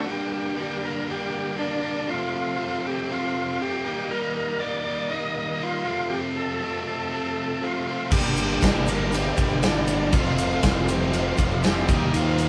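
A gritty, overdriven tonewheel organ carries the melody from the start, its fast rotary speaker giving it a thick, churning vibrato over a second organ in the background that holds sustained chords through a slow rotary speaker with light overdrive and audible key click. This swaggering classic rock passage in G minor moves at 119 BPM in a straight 4/4, cycling through Gm, F and Eb. A bright, cranked stack guitar plays a picked riff throughout. One biting overdriven guitar sounds only briefly at the very start, and at 8.1 seconds it returns alongside a second biting overdriven guitar, both in the background, one of them double-tracked. At the same point a fuzz-laden fingered bass, a big acoustic drum kit with a tight kick, medium-tuned snare, crash and ride, and a very quiet, grainy egg shaker enter. The drums sit up front with a mid-forward, rolled-off top, and the whole band sounds like it is playing live together in a moderate stone room.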